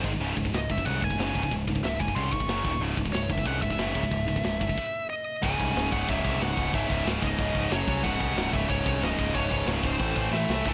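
A driving 4/4 pulse at 184 BPM in a straight feel powers this epic, relentless heavy metal excerpt in C# harmonic minor, with a tight drum kit of crash, ride, hi-hat, snare and kick hitting in a big room, a full stop from 4.8 to 5.4 seconds and a drum fill closing it out at 10.3 seconds. An up-front, high-gain lead guitar carries the melody over a growling, overdriven picked bass and two riffing rhythm guitars, one overdriven and one distorted sitting in the background, joined at 5.4 seconds by a very quiet, double-tracked overdriven guitar. Bright cymbals and a blown-out, overdriven recording give the whole a raw, saturated edge as the chords move from C#m through F#5 to A5.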